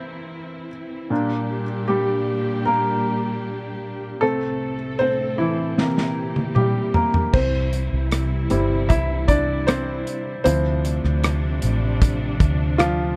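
This is a hopeful, emotional pop ballad at 77 BPM in a straight 4/4, cut from a longer piece and set in a small room with a dark production and a faint mains hum. A clear, woody upright piano carries the accompaniment from the start, intimate and up front with audible action noise and a short sustain, while a lush string section holds bowed chords beneath it with vibrato and a smooth top. The harmony moves from Am through Gm/Bb and C6 to C7, and a drum fill at 5.8 seconds brings in an acoustic kit with a tight kick, medium-tuned snare, rim click, toms, hi-hat and crash, its rolled-off top keeping it soft-edged. At 7.3 seconds a foam-muted fingered electric bass joins, up front with a round, amped tone, as the chords settle on C and then Dm7. The piano remains the featured voice throughout, with the strings and rhythm section framing it closely and tenderly.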